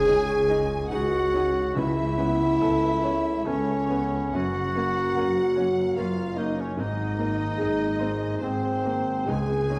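A lush, reverberant cinematic excerpt, hopeful and uplifting, moves at a rubato 72 BPM in 3/4 as a focused symphonic violin section carries the melody over a smooth chamber violin line and a distant, up-front clarinet, with a mellow French horn section holding sustained chords, an intimate baby grand piano with audible action noise, ringing thumb-plucked harp arpeggios in the background, a very quiet viola section, a background cello section and a focused double bass section beneath, and barely audible hard-mallet timpani that stop at 3.0 s, all moving through chords from Dbsus2 to Gb and Abadd9 before returning to Dbsus2.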